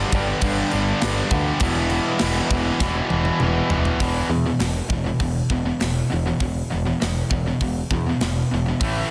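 Dense, heavily limited modern production with studio reverb gives this heavy metal excerpt a relentless, epic weight in straight 4/4. Up front, a tight metal drum kit with a big-room, airy polish drives the music with kick, snare, hi-hat, toms and bright crash cymbals. A growling picked bass, direct and amped with overdrive, anchors the low end alongside two bright, picked guitar riffs sitting in the background, one overdriven and one distorted. Over the opening chords of G and E minor, a very quiet brassy analog pad adds bold, detuned sawtooth sustain with chorus, vibrato and a moving notch, while a very quiet double-tracked overdriven guitar plays its own riff higher up. After a drum fill from 2.8 s, the pad and that quiet guitar stop at 4.0 s, and the remaining band settles onto a stark E5 power chord.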